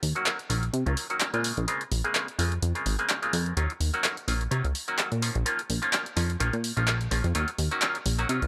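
A plucky, up-front analog bass with a fast-attack filter pluck and mellow decay drives this funky, groovy filtered disco house build-up at 127 BPM in Eb dorian, swung on the 16ths and moving between Ebm9 and Bbm9 chords. An overdriven analog drum machine punches out handclaps and hi-hat, while a twangy, nasal clav through a combo amp, colored by phaser and a low-pass filter, comes in at 0.2 seconds. The dry hardware sound carries a gritty transformer saturation across this 8.5-second section cut from a longer track.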